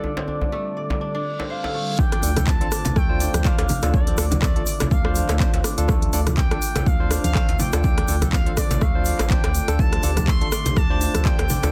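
A dense, heavily limited modern master in a small room frames this driving afro house excerpt at 123 BPM in D minor, where a smooth sawtooth portamento lead with chorus, vibrato and tape echo sings over a mellow detuned pad, crisp ringing fingerpicked kora arpeggios, barky overdriven electric piano stabs and a deep, saturated djembe. An electronic reverse cymbal sounds from 1.2 seconds into the drop at 2.0 seconds, when a punchy, layered, overdriven kick lands alongside a grainy tube shaker. An afro-pop kit with handclaps, smooth hi-hats and rim clicks, bright thin-skinned congas and a round, dark, nasal analog bass then carry the groove to the end, with the pad, kora, electric piano and bass all pumping under sidechain compression.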